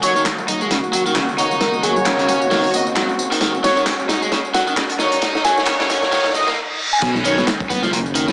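A crunchy breakbeat kit swings its sixteenths at 133 BPM in 4/4, its tight kick, medium-tuned snare and dark cymbals sounding gritty and saturated with a rolled-off top, while layered electronic tambourine and handclaps with a tape-warm tint sit behind it and bright, thin-skinned congas tick in the background. This swaggering, raw breakbeat fragment in Eb minor rests on an Ebm7 chord through a build-up, with an overdriven, picked electric guitar riff placed up front, clear soft-attack brass stabs in a classical ensemble style, and a lush, woody string section holding bowed chords under sampler grit, pumping and a low-pass filter. A round, gentle FM lead with a keys-like, decaying tone carries the melody through chorus, dub echo and an old-record haze. A drum fill runs through most of the build-up, a very quiet riser and reverse cymbal swell on through a short break from 6.6 seconds, and the drop arrives at 7.0 seconds on Badd9. 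That drop brings in a deep, rumbling detuned saw bass whose beating low end anchors the closing moments. The whole mix sits in a plate reverb with a small-speaker, high-passed character.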